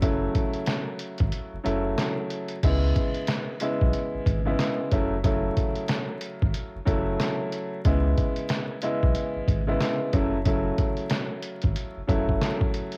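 A dry, homespun cassette sound with a bed of vinyl crackle frames this tough, moody boom-bap hip-hop excerpt, cut from a longer piece and moving at 92 BPM in 4/4 with a 16th-note swing. An upright piano sits up front, woody, smooth and vintage in tone, its cassette coloring and filtered edges giving the accompaniment a faded, dusty character as it moves between F#m7 and C#m7. Underneath, a soft dub sub bass supplies deep, round low end with a triangle-and-square-wave tone, a fast attack and sustained notes, thickened by tube saturation before it drops out at 12.4 seconds. The sampler-style drum kit is compressed, pitched down and muffled, with a thumpy kick, a medium-tuned snare, hi-hat and crash cymbal carrying 12-bit grit and tape wear, all re-recorded in a small room. A break from 1.3 to 2.6 seconds interrupts the groove before the main section settles in for the rest of the clip.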